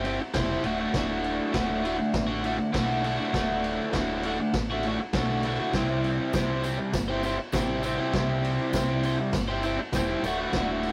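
An overdriven electric guitar, bright, picked and double-tracked, sits up front in this swaggering, raw garage rock excerpt, driving a riff that spans from D2 up to C5 across the whole clip. Beneath it, an organ-like FM bass with a hollow, percussive tone and a fast attack that decays quickly adds dark low end, its sound colored by tube saturation. A vintage acoustic drum kit plays kick, snare, ride and crash throughout, with a tight kick, a medium-tuned snare, dark cymbals and a gritty, saturated character that is rolled off at the top. At 6.0 seconds a jingly tambourine enters, distant and tucked in the background as if heard from a large room. The harmony moves between C and D chords over a straight 4/4 pulse, and the whole piece has the rough, live feel of a rehearsal-room recording with a moderate touch of studio reverb.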